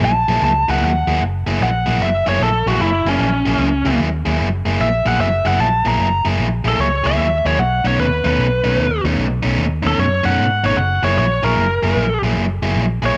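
Electric blues shuffle at 151 BPM in 4/4, swung in eighths and rooted in F# mixolydian, this excerpt from a longer piece feels laid-back and soulful. A biting lead guitar, overdriven and picked, carries the melody across a range of C#4 to A#5 and takes a solo over the band for the first 1.2 seconds. Beneath it an overdriven electric guitar plays the riff in a warm, up-front tone, spanning B2 to G#4. A vintage muted fingered electric bass anchors the low end with a dark, round, punchy sound, its foam-muted notes amped and sitting up front. The harmony rests on F#9, moves to B9 at 7.6 seconds and returns to F#9 at 10.8 seconds. Light reverb and a digital ambience give the recording a modest sense of space.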